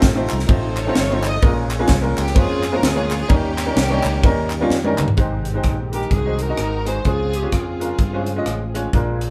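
A bright, woody upright piano, growly fingered electric bass, punchy fusion drum kit and a very quiet, lightly overdriven tonewheel organ with slow rotary open this reverent, jubilant swung gospel excerpt. Lush bowed strings soon carry the melody over crisp group handclaps that stop at 5.1 s. After a drum fill, a barely audible dark French horn section adds sustained chords, and a raspy, gritty alto saxophone joins the melody at 5.9 s, with the band playing live together in a small room.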